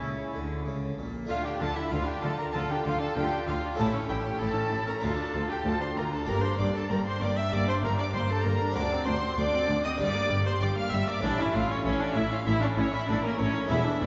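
Driving in a straight 4/4, this stormy, baroque-style concerto movement cut from a longer piece opens with a brief close-miked oboe note, heard until 0.6 s alongside period-style gut-string violin sections, the upper one rich and smooth-topped on the melody and the second, up-front one playing a reedy inner line, over light-vibrato violas, a nasal cello section set in the background, rich double basses, and a brilliant, dry, plucked harpsichord, all heard from further back in a wet concert hall as the harmony moves from D minor through G minor to a closing A chord.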